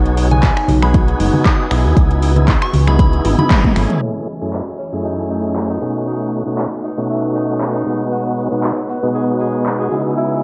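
Moody and warm, this deep house cut moves at 117 BPM in 4/4 with a light swing on the sixteenths, sitting in F# dorian over chords such as G#m7/B, C#m9, F#m9 and B9. An up-front tonewheel organ plays overdriven stabs with key click, fast rotary speaker and sidechain pumping throughout, while an ethereal, airy pad with ensemble chorus and built-in reverb hovers in the background. A round, deep analog bass with tube saturation and a punchy, overdriven electronic kick anchor the opening alongside soft-handed congas and a pure FM bell melody with chorus, phaser and diffuse delay. All of these drop away before 4.0 seconds, around a drum fill from 3.2 seconds and a band accent at 3.5 seconds. From 4.0 seconds a distant, roomy tenor saxophone takes a jazz-style solo with vibrato and scooped notes through analog delay, joined by a very quiet jingly tambourine, as a filter sweep moves over the drums. 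The electronic kit of snaps, handclaps, metallic hats and toms is overdriven and low-pass filtered, and the whole mix is dreamy and soaked in plate reverb with a cassette-tape haze.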